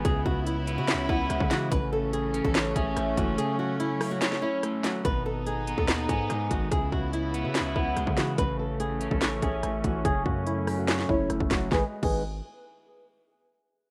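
A dark, brooding half-time trap excerpt opens with a fingerpicked flamenco guitar melody over a twangy, slightly broken-up electric guitar, bowed chamber strings with gut-string tone and light vibrato, a heavy, aggressive 808-style bass, and an up-front trap kit of hard-clipped kick, sharp snare, crisp hats, handclaps, rim clicks and crash. From 1.1 seconds a hollow, woody synth lead with chorus and digital delay adds a soft, warbling second line in the background, and the kick drops out between 3.4 and 5.0 seconds. A filter sweep then carries the second section over cycling chords, all set in digital ambience as a rough home demo mix.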